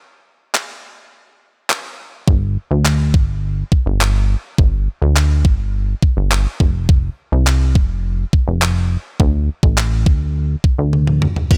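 A clean 12-bit drum machine opens at 0.5 s with a thumpy kick, handclaps, toms and a crash cymbal, its sampler-style electronic sound placed up front. This is confident, energetic dance-pop at 104 BPM in a straight 4/4, tuned slightly high to A4 = 441 Hz. At 2.3 s a plucky analog bass joins, mixing sawtooth and square-wave tones with a fast attack and a decaying filter pluck that sounds punchy and funky yet mellow, moving between F1 and D2. Sidechain pumping on the bass gives it a breathing, dance-floor push alongside the up-front beat. A drum fill from 10.9 s to 11.5 s rounds off this short section taken from a longer piece, with a digital ambience surrounding the mix.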